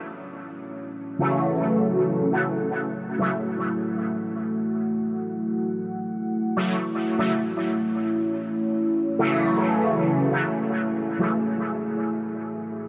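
A juicy, resonant sawtooth polysynth fires bright, filter-swept stabs through chorus, phaser and dub echo from 1.2 s over a deep, moody pad of dark detuned chords with a sub octave and a moving notch, giving this hazy, hypnotic free-time dub techno excerpt a cassette-tape grain inside a huge, wet reverb.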